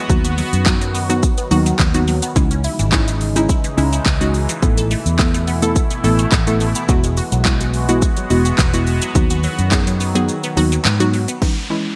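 Dance-pop at 106 BPM with a euphoric, carefree mood, this short excerpt sets a punchy, overdriven pop drum kit with gated reverb, crash, handclaps, metallic hats, shaker, fat snare and a kick that drops out from 10.3 to 11.4 seconds over a dark, round muted electric bass, a hollow, bouncy square pluck with chorus, a bright, evolving sawtooth pad holding sustained chords, and a squelchy blip pluck arpeggiating through phaser and delay in the background, the bass, plucks and pad all pumping to the sidechain through chords like B/D#, C#madd9, Asus2 and Eadd9 in a bright 1980s-style digital production before a downlifter closes it at 11.4 seconds.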